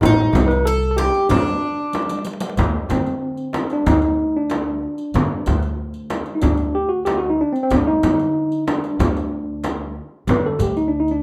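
A rough home-demo mix in a small, moderately reverberant room opens this passionate, stately cut from a longer Turkish makam ensemble piece in D makam hicaz, moving at a straight 94 BPM in 4/4. Up front, a clean tine electric piano carries the melody through its built-in speakers, with a bright, metallic Greek bouzouki adding a picked second line on doubled strings from 0.1 until 2.2 seconds. Beneath them, a woody, thumpy upright bass plays pizzicato on steel strings. The percussion blends a deep, large frame drum, a very quiet clay-shell darbuka with a natural skin, and a distant riq with bright jingles played with soft hands. A drum fill at 1.9 seconds leads from the opening passage into a longer second section, where the electric piano, bass and hand drums carry on together.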